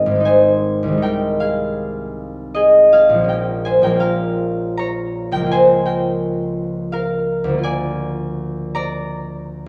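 A concert harp opens alone on an A-flat chord at 0.0 s, its fingerpicked strings ringing and up front in a graceful, serene classical solo. The piece moves in a flexible 3/4 at roughly 68 to 86 BPM, with a rubato feel that lets each bar breathe. Spanning a range from Ab1 to Bb5, the harp moves through Ab/C and into B-flat minor at 3.3 s, then Bbm/Db, before settling on Bb7/D near the close. A stone room reverb with a 1.3 s decay gives the instrument a sense of space. The production is dark and warm, and the harp is tuned to A4 = 438 Hz. This 9.7 s passage is cut from a longer piece and ends on that Bb7/D chord.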